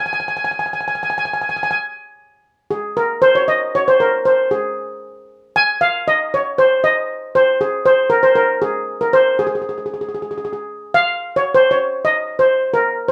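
Close, detailed microphones and a small room's moderate reverb frame this festive, bouncy calypso excerpt, in which a lone lead steel pan, up front and played with soft rubber sticks, rings out shimmering and airy from the start and carries its mellow solo from 2.5 seconds to the end at 13.1 seconds.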